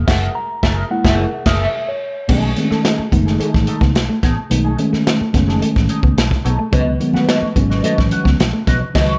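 A short funk excerpt at 108 BPM opens with a mellow tine electric piano solo of stabs over band accents, backed from the start by a gritty, saturated breakbeat kit with dark cymbals, a round foam-muted fingered bass, a clean hollow-body guitar riff with analog chorus sitting in the background, and a wah guitar bathed in spring reverb, all moving through F#9, B13 and C#9sus4 chords in a dark, energetic mix, with very quiet thick-skinned congas arriving at 6.7 seconds.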